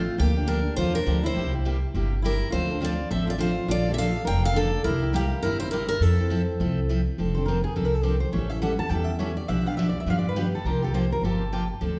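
A swinging 4/4 at a brisk 207 BPM drives this playful, charming jazz manouche excerpt in F major, anchored by a thumpy, woody pizzicato upright bass and a bright, up-front dreadnought guitar accompaniment moving through chords such as Gm7/D, C7 and Fmaj7. A boxy parlour guitar carries the melody until 6.9 s, while a warm jumbo guitar plays a second line with audible finger squeak until 11.7 s. From 7.2 s a steel-string guitar solo takes over over F6, A7 and C7sus4, all set in the wet reverb of a recital hall or church.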